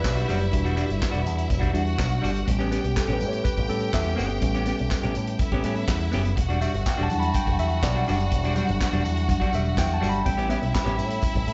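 Heard as a live gig through a venue's PA with club reverb and a muffled top end, this sultry, driving disco passage sets a worn, slightly out-of-tune tine electric piano soloing throughout with slapback echo over a punchy, up-front picked bass with an envelope filter, a vintage drum kit with tight kick, medium-tuned snare, hi-hat and handclaps, a dark, clean semi-hollow electric guitar and a clear bowed string section with vibrato, both carrying slapback echo, and a jingly tambourine tucked in the background, all moving between Em9 and A9.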